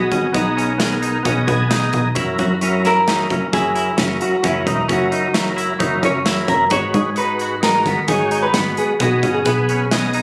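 A dark hollow-body jazz guitar carries the melody through delay over gritty, key-clicking tonewheel organ with chorus vibrato, twangy chorus-drenched clean guitar arpeggios and a punchy, plucky analog bass, with a big rock kit of punchy kick, snare and hi-hat arriving at 0.1 seconds, as this bright, driving progressive instrumental moves in a straight 5/4 at 132 BPM in B major through B6, F#7 and G#m7, the organ slipping in a fill from 1.2 to 2.2 seconds, all captured on a phone in a small, compressed club room.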